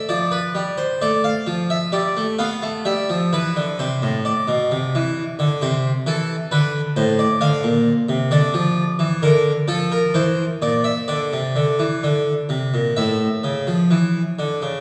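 A straight 4/4 pulse at 65 BPM carries this contemplative, solemn baroque-style two-part invention in D minor, cut from a longer piece and played on a solo harpsichord across its full 14.8 seconds, ranging from A2 to F5. The French-style instrument sounds plucked and full, its two sets of strings placed up front, while a wet concert hall reverb with a 1.8-second decay sets the whole performance further back in the room. The harmony moves from Dm7/F through G and Amadd11 to Dm, then colours Bbadd9(#11) and Bbadd9 before coming to rest on A.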